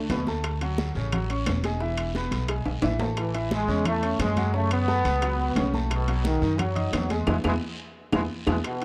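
Salsa at a festive, joyful 176 BPM, this short excerpt from a longer piece sets a bright, up-front trombone section with light vibrato, entering in earnest at 3.2 seconds, over a brilliant concert grand piano, a thumpy, dark pizzicato upright bass, ringing metal-shell timbales, thick-skinned congas, tight, very quiet bongos, woody claves and a raspy, distant guiro, with drum fills and a closing band accent in a dry, close 1970s-style studio sound.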